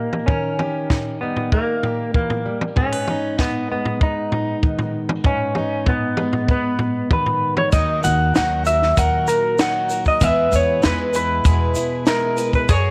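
A modest plate reverb and small-room ambience frame this short, uplifting and nostalgic indie folk cut from a longer piece, moving in a straight 4/4 at 97 BPM. From the start, an electric guitar through a small old amp carries the melody up front, its dark, slightly broken-up, lo-fi tone colored by harmonic tremolo. Beneath it, a fingerpicked plugged-in steel-string acoustic guitar adds full-bodied jumbo accompaniment, and a compact cocktail drum kit sits dry and natural with a high-tuned snare, tight kick, hi-hat and toms. At 7.7 seconds the arrangement builds as a picked twelve-string parlour guitar brings a boxy, shimmering, octave-doubled sparkle with audible finger squeak, a woody pizzicato upright bass on steel strings steps up front, and a grainy egg shaker rustles distantly in the background. The harmony shifts from D# and G#m to D#m and E, and at 12.7 seconds a mellow, round mandolin slips in with a brief picked arpeggio on its double strings.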